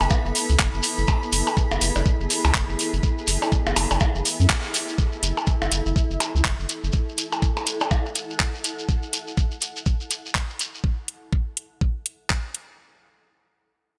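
A round, deep analog bass pumps up front beside a knocking, tape-warm electronic kick and a garage kit of handclaps and metallic hi-hats in this hypnotic, cool minimal techno fragment, alongside electronic percussion blips re-recorded in a large room, a grainy, close shekere, a pulsing, chorused gated texture in the background and a cloudy, evolving granular pad that fades out from 5.0 to 10.8 seconds after a band accent at 4.5, the mix framed by light digital ambience and bright 1980s-style production.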